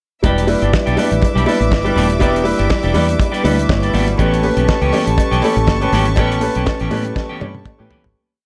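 Disco in E dorian at 121 BPM with a glamorous, danceable swing, where a round, foam-muted fingered bass plays a syncopated line with chromatic approach notes up front under a dry, fat-snared 70s kit keeping a four-on-the-floor beat with open off-beat hats, while choppy sixteenth-note clean guitar with lush chorus, syncopated drop2 baby grand chords with short fills, a floating sul tasto string pad, a background conga groove and a very quiet saturated cowbell in quarters ride Em7 to A9 in studio reverb before a fade from 6.2 seconds and a closing drum fill at 7.2 seconds.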